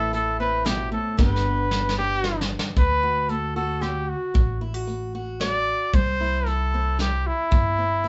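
A breathy, close-miked trumpet carries a sunny, heartfelt melody with light vibrato and a soft attack in this honky-tonk and classic country waltz at 114 BPM, backed by a boxy, picked ladder-braced acoustic guitar, a woody pizzicato upright bass and an up-front brush drum kit with a punchy kick that plays a fill from 1.2 to 2.8 seconds, all heard as a band playing live in one small room with a rolled-off, vintage sound over chords moving from Am through G and D to C.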